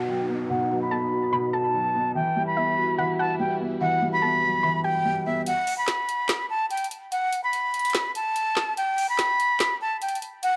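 A breathy silver concert flute carries the melody up front throughout this eerie, menacing half-time trap excerpt at 145 BPM in E harmonic minor, its crisp attack and vibrato softened by a low-pass filter, tape echo and cassette grit. For the opening 5.5 seconds, under a filter sweep, a soft round pluck with chorus adds a second line from the background, a felt-muted upright piano adds mellow accompaniment with audible action noise, dark bowed strings hold sustained harmony over B and Emadd9, and an electronic downlifter falls away by 2.2 seconds. At 5.5 seconds the harmony drops out and a trap kit enters with a woody snare, metallic hi-hats and handclaps, the whole piece bathed in spring reverb and the hiss of a home cassette recording.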